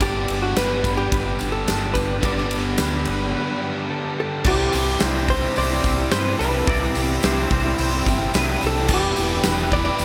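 A huge arena drum kit sits up front in this blissful, hazy shoegaze and dream pop passage at 108 BPM in C major, its punchy kick, bright cymbals and pumping room sound driving a straight 4/4 feel through a break from 3.3 to 4.5 seconds as the chords move from G to C and then Em7. A dark, compressed hollow-body jazz guitar carries the melody through analog delay, while a twangy clean guitar plays chorused, delayed arpeggios. Further back sit three guitar riffs: a biting, double-tracked overdriven part with phaser, a slightly broken-up small-amp part with reverse reverb, and a lush chorused overdriven part. Beneath them are a round, amped fingered bass and a close, jingly tambourine. An ethereal, airy pad enters at 5.3 seconds, and the whole mix is soaked in a lush hall reverb.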